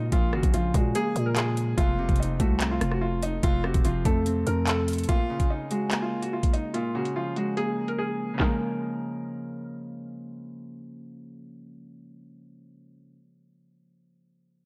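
A cold, dark drill cut from a longer piece, this half-time hip hop groove at 145 BPM in Bb minor moves from Bbm7 to F, with a clear, open concert grand piano carrying the melody through digital delay while a bright, fingerpicked Celtic harp rings up front as accompaniment until 13.2 seconds. A growling, buzzy 808-style bass with a fast attack and decaying tail drops out at 5.1 seconds, and the electronic drill kit of knocking kick, sharp snare, rim click, handclaps and metallic hi-hats sits up front with a tape-warm edge, briefly muting from 8.0 to 8.4 seconds. A filter sweep runs from 5.1 to 8.4 seconds, all within a dark, low-pass-filtered production and small room ambience.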